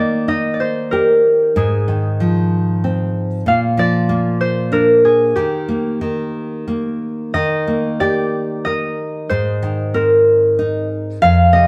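In a lilting 3/4 at 93 BPM with a loose, rubato feel, this tender children's lullaby in Eb major sways gently from start to finish of the 11.7-second excerpt. A ringing, fingerpicked concert harp carries the melody up front in the middle register, while a full-bodied nylon-string guitar, also fingerpicked and up front, supplies deep classical accompaniment that reaches down into the bass. The two play live together in a stone room whose moderate reverb lends a soft glow, and the opening phrase begins again at 7.3 seconds.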